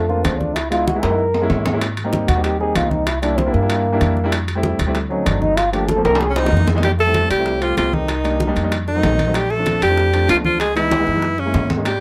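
A straight 4/4 groove at 191 BPM drives this lively, sunny Afro-Cuban jazz excerpt. A veiled, soft-edged, cup-muted trombone solos through the first 6.8 seconds over a dark, mellow concert grand piano, a woody, thumpy pizzicato upright bass, ringing metal-shell timbales, and hard-handed congas and saturated bongos tucked in the background, while drum fills punctuate the groove. At 6.3 seconds a bright, breathy alto saxophone with scooped notes takes the melody up front, and the whole excerpt sits in a lightly reverberant room.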